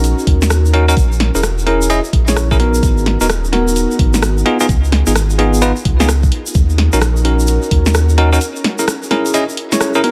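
Bell-like tine electric piano stabs sit up front with a clean, direct tone, touched by subtle chorus and digital delay, over a moody, soulful two-step UK garage groove at 129 BPM with a 64% 16th-note swing, moving through D#m7, A#m7b5, G#m7 and C#7. A thick, saturated sub bass pumps with sidechain alongside a knocking, tape-tinged electronic kick, while a garage drum kit adds cracking snare, rim clicks and bright hi-hats, and a grainy acoustic tube shaker and a very quiet, warbling, detuned pad float behind in digital ambience. The sub bass drops out at 8.4 seconds for a short break, marked by a band accent at 9.8 seconds in this cut from a longer piece.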